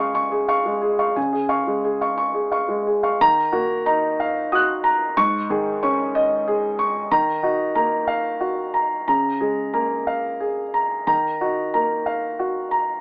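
Reflective and intimate, this fragment of a neoclassical minimalist piano piece in Eb minor drifts in a rubato 6/8 at about 61 BPM: a solo upright piano, woody, open and up front with a short sustain, ranges from Ab2 to Gb6, moving from an opening Db chord into a second section at 3.2 seconds that keeps returning to Ebmadd9 through Absus4 and Bbm7/Db, all heard through an AM-radio tone with a moderate studio reverb.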